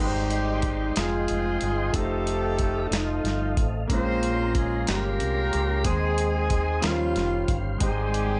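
Slow gospel in 6/8 at 61 BPM in Ab major, this hopeful, reverent passage is cut from a longer piece and runs about 8.4 seconds. A breathy, intimate alto saxophone carries the melody in a close-miked, jazz-style solo voice with subtone, soft attacks, scooped notes and vibrato, alongside a tight pop-style horn section with octave doubling. A clear concert grand piano with deep bass accompanies, while a smooth tonewheel organ holds sustained chords through a slow rotary speaker and chorus vibrato, its key click audible. Underneath, a round, punchy fingered electric bass sits up front beside a gritty, compressed boom bap sampler-style kit of thumpy kick, medium-tuned snare and hi-hat, which comes in at 0.3 seconds. The harmony moves from Abmaj7 through F7 and Bbm9 to Ab/Eb and Eb13 before settling back on Abmaj7, all in a light reverb with a softened top end.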